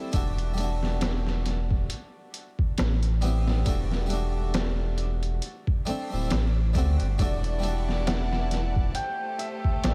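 A slow 68 BPM trip hop groove in 4/4 with a lazy 16th-note swing carries this melancholic, hypnotic excerpt in E minor, built on a sampler-style kit of thumpy kick, medium-tuned snare and hi-hat that sounds pitched down, muffled and overdriven, sitting up front beside a round, sine-like sub bass. A plucked, brilliant harpsichord with octave strings supplies accompaniment through tremolo and tape echo until 9.0 s, while a very quiet darbuka with clay shell and soft hands adds close, dry percussion from 1.0 s. The harmony moves slowly through Em11, Am9 and D9sus4, settling toward Am7 at the close. At 7.2 s a shimmering hammered dulcimer enters with a ringing melody, treated with tape echo, as a clear studio violin section lays down bowed sustained chords with light vibrato and a biting edge roughened by vintage 12-bit sampler grit. A light studio reverb frames the mix, and the passage is cut from a longer piece.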